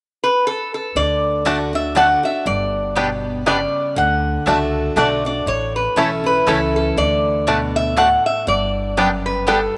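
Lively and virtuosic, this bluegrass excerpt in D major swings at 120 BPM in 3/4, with a nasal, metallic lap resonator guitar sliding up front on the melody from 0.2 seconds, joined at 1.0 seconds by a full-bodied dreadnought acoustic guitar and a dark, woody pizzicato upright bass, then at 1.5 seconds by a twangy, percussive banjo carrying melody and a double-strung mandolin adding stabs over a D, G and A progression, all set in a moderate plate reverb.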